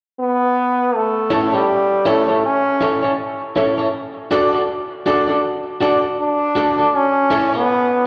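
Swung sixteenths at 80 BPM in 4/4 carry this uplifting reggae excerpt in A mixolydian, where a bright, vibrato-laden trombone leads the melody with dub and slapback echo from 0.2 s, joined at 1.3 s by a slightly broken-up, compressed electric guitar with warbly pitch drift and a woody, vintage upright piano playing stabs, over a move from A to D and back to A in a club-sized room heard through a live venue's PA.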